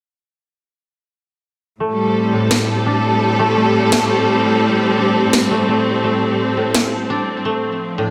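Heavy and dark, this excerpt from a longer half-time drum and bass piece moves at 170 BPM in 4/4 in A minor, with a light swing on the sixteenths. A clear symphonic string section holds lush, bowed sustained chords from 1.8 seconds, its vibrato and smooth top sitting up front, moving from Am7 to a rootless Bb near the close. Alongside it, a woody koto played with fingerpicks spins arpeggios through a low-pass filter and delay, with a filter sweep running across its whole span. An electronic snare drum arrives at 2.5 seconds and drops out at 6.8 seconds, its cracking, layered hit tape-warm and re-recorded in a small room, placed up front. The dreamy mix is soaked in a wet plate reverb and a small room reverb.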